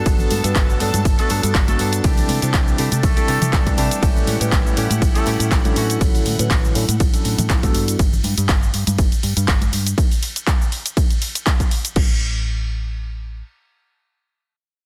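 A punchy, overdriven electronic kick sits up front in this joyful, funky stretch of filtered disco house, its layered thump carrying the sound of a large room. Around it, an overdriven house kit of handclaps, hi-hat, ride, crash and cabasa pumps against the sidechain with a loose sixteenth-note swing, while very quiet tambourine and congas add close, dry, hard-handed acoustic colour. A dark, round, foam-muted fingered bass holds the low end and keeps going until 13.4 seconds. A bell-like, clean electric piano with phaser shimmers over lush, mellow string-machine chords that sit in the background with a slow attack and ensemble chorus, moving through rich major-ninth harmony. A twangy, scooped, direct-recorded guitar picks a compressed riff until 6.0 seconds, and from 1.2 seconds a bright, octave-doubled horn section states a smooth pop melody with light vibrato, 12-bit sampler grit and delay. 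The whole is a dense, heavily limited modern master with digital ambience.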